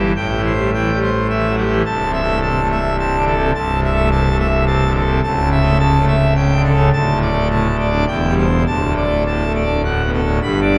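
A full pipe organ plays alone with brilliant mixtures and romantic voicing, up front in a wet cathedral reverb, carrying this jubilant, majestic classical organ toccata at 106 BPM in 3/4, spanning C1 to B5 as its chords move from Am7 through A7/C# to D in a brief cut from a longer piece.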